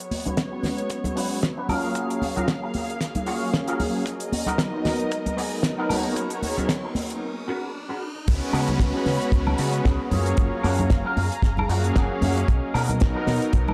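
This nu-disco excerpt rides a 4/4 groove at 114 BPM with a light swing on the sixteenths, anchored by a dry, tight acoustic kick and a damped 70s drum kit whose fat snare, dark cymbals, hi-hat and woodblock sit in a small room, joined by ringing, close congas. The mood is cosmic and groovy, with chords moving from C#7sus4 through F#maj9 and Bmaj7 to G#m11. A smooth, warbling analog pad with slow attack and long release carries sustained harmony under chorus, dub echo and sidechain pumping, while muted, veiled strings played con sordino hold distant bowed chords with vibrato and pumping of their own. A bright, twangy electric guitar with an envelope filter picks a clean, scooped riff through ensemble chorus and dub echo, and filter sweeps on both guitar and pad shape a build-up that reaches a short break at 7.2 seconds. At 8.3 seconds the drop arrives as a round, punchy fingered electric bass with an envelope filter enters, while electronic risers and downlifters hover in the background of this echo-heavy mix.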